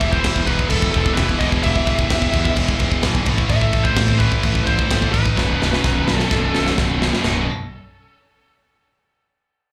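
A relentless, heavy metal passage, cut from a longer live club performance heard through the venue's PA, opens with a dark, high-gain lead guitar carrying the melody with slapback echo and digital delay, joined by a very quiet, warm second lead line, over bright, picked riffing from a heavy high-gain guitar with slapback echo, a double-tracked scooped guitar and a very quiet, tight distorted guitar. Beneath them a fingered electric bass growls with overdriven fuzz while an up-front, tight metal drum kit with a medium-tuned snare, tight kick, crash and splash cymbals and a rolled-off top drives the Em, Am and B changes. A drum fill runs from 5.4 to 7.2 seconds, and the lead lines drop out at 6.7 seconds, shortly before the band lands on a B5 chord at 7.2 seconds in light club reverb.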